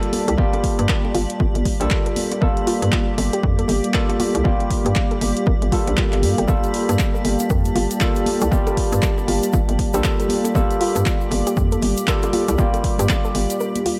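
A 118 BPM deep house groove in 4/4 with a 60% swing on the sixteenths sets a warm, smooth mood in G minor, resting on a single Gm9 chord in this short cut from a longer piece. A punchy, overdriven analog drum machine supplies handclaps and hi-hat from the start, and an overdriven electronic kick sits up front, entering at 0.4 seconds, while very quiet, ringing bongos and congas add close acoustic color and a grainy egg shaker joins in the background from 6.5 seconds. Underneath, a hollow, bouncy FM bass with a fast, decaying attack knocks between G1 and G2, pumping against the kick. A barky, bright tine electric piano plays stabs through a combo amp with light overdrive, phaser and tape echo, and a soft, round, warbling pluck spins arpeggios with chorus and tape echo. Behind them, a deep, moody sawtooth pad holds sustained chords with chorus, a blurred granular cloud pad drifts with its own built-in reverb, and a layer of vinyl crackle gives the track a digital ambience, with the kick dropping out at 13.6 seconds.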